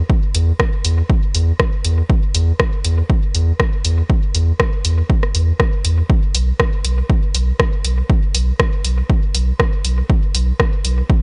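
Dub techno with a cavernous, hypnotic mood, cut from a longer piece, where a deep, round sub bass with tube saturation and sidechain pumping sits up front alongside an overdriven electronic kick drum and a punchy analog drum machine playing hi-hat and rim click through studio reverb and dub echo, all set in a digital ambience.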